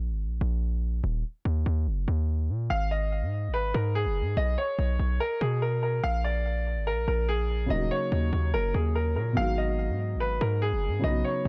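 A punchy, sine-based 808 bass with a noise layer opens this tense, cold half-time drill excerpt alone, before a clear, up-front concert grand carries the melody through low-pass filtering and delay from 2.7 seconds, and a felt-muted upright piano, dark and intimate with audible action noise, adds accompaniment from 7.7 seconds in a small room.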